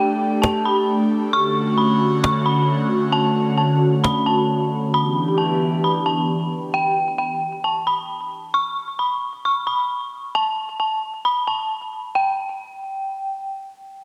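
Hazy and melancholic, this atmospheric cloud-rap excerpt moves at 133 BPM in a half-time feel in E dorian, with a dark, detuned synth bell carrying an eerie, warbling, inharmonic melody through chorus and tape echo from the start until 13.5 seconds. An airy, breathy pad with a slow attack and phaser holds sustained chords until 6.7 seconds, while a woody, close and dry cajon with hard hands and faint snares sits up front briefly until 4.1 seconds. A lush hall reverb gives the whole piece a digital ambience as the harmony moves from A7sus4 through Dmaj7 to Em7 before dropping out at 8.5 seconds.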